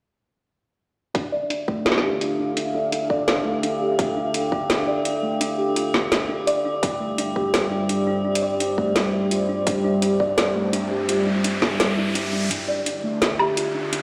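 A half-time drum and bass groove at 169 BPM swings its sixteenths in 4/4, with a tight electronic kick and an up-front kit of woody snare, metallic hi-hats and woodblock, re-recorded in a small room and filtered, setting a dark, tense mood in D minor. A hollow, fingertip-plucked kalimba plays arpeggios through a low-pass filter and digital delay over a detuned sawtooth analog pad with chorus, 12-bit sampler grit and sidechain pumping, moving from Dmadd9 to Gsus4 at 6.8 s, while an eerie, inharmonic FM drone hovers in its own reverb. A riser enters at 10.3 s, and a brief break leads into a build-up from 12.5 s with filter sweeps on the kalimba and pad, all set in a huge stone-room reverb in this passage cut from a longer piece.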